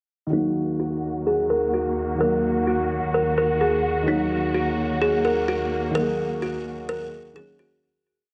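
Hip hop and trap with a half-time feel, this eerie, dark piece sits entirely in a breakdown built on a single minor chord. A buzzing kalimba carries the looping melody up front, its thumbnail-plucked tone bright and woody, repeated like a sampled loop. Beneath it, a dark concert grand piano plays held chords in open voicing with a mellow, boxy character and deep bass, also looping like a sample. A dark studio string section supplies a lush bowed pad with vibrato and a smooth top. All three parts pass through a low-pass filter, a filter sweep runs across the whole piece, and the music fades out from 6.0 to 7.8 seconds within light reverb and small room ambience.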